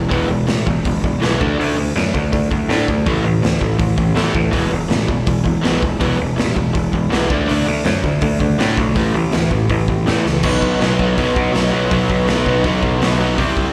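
A driving, straight pulse in common time kicks off this energetic, rebellious punk rock fragment, caught live at a gig through the venue's PA with a light club reverb around it. The raw garage drum kit enters at 0.1 seconds, sitting up front with a punchy kick, medium-tuned snare, hi-hat and crash, all saturated and gritty in a bright stone room that pumps, while its top end is rolled off. An overdriven semi-hollow guitar plays a riff up front, its warm hollow-body tone carrying a slapback echo, while a crunchy, brighter overdriven guitar plays its own riff very quietly beneath it. The overdriven picked electric bass growls underneath, direct and amped with a bright edge. The riff cycles through E, D5 and A5, and a drum fill at 10.3 seconds pushes the band onto a B chord for the closing section.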